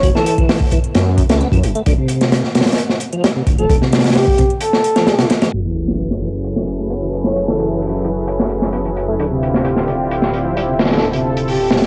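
Funky and gritty, this breakbeat excerpt in F# minor runs at 131 BPM, driven by an up-front, crunchy breakbeat kit with a punchy kick and rolled-off top, a faint metallic electronic hi-hat in the background until 5.5 seconds, a deep, rumbling detuned saw bass, and a full tonewheel organ riff colored by slow rotary speaker and chorus vibrato. A breathy, flute-like synth lead floats in short melodic phrases, and at 5.5 seconds a lush, warbling unison pad enters with sustained chords, sidechain pumping and a filter sweep, marked by an impact and a distant sub drop. The whole mix has a lo-fi cassette character, with vinyl crackle, a low-pass haze and light reverb in a small studio ambience.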